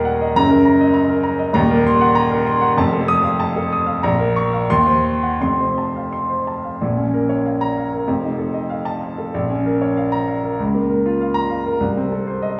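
This is a romantic classical character piece for solo piano in Bb minor, cut from a longer work, with a stormy, brooding mood. It moves in 2/4 at roughly 83-100 BPM, and the rubato lets the pulse stretch and give. The grand piano has a warm, natural tone and sits up front, spanning from Eb1 in the deep bass to Eb6 in the treble. The harmony leans on darkened chords such as Cm7b5/Eb and Cdim/Eb, pulling toward F7 and resolving to Bbm. A new section begins at 6.8 seconds, circling Bbm and F7 before settling on Adim/C near 11.8 seconds. A wet recital hall reverb gives the sound a sense of space, as if heard from further back in the room.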